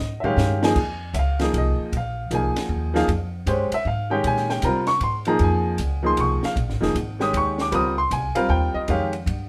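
Hypnotic and searching, this short modal jazz fragment, cut from a longer piece, moves in a swung three-beat feel over a single minor ninth chord. A clear upright piano carries the accompaniment with an intimate, natural tone, sitting up front in the mix with its action noise audible. An upright bass, also up front, is plucked on gut strings, giving a thumpy, woody sound. A compact cocktail drum kit, dry with dark cymbals, a high-tuned snare and a punchy kick, opens with a fill over the first 0.8 seconds and sits further back than the other two parts, drawing on ride, hi-hat, crash and toms. A moderate studio reverb gives the trio a sense of room, and the piano drops out at 9.1 seconds just before the bass rings to the end.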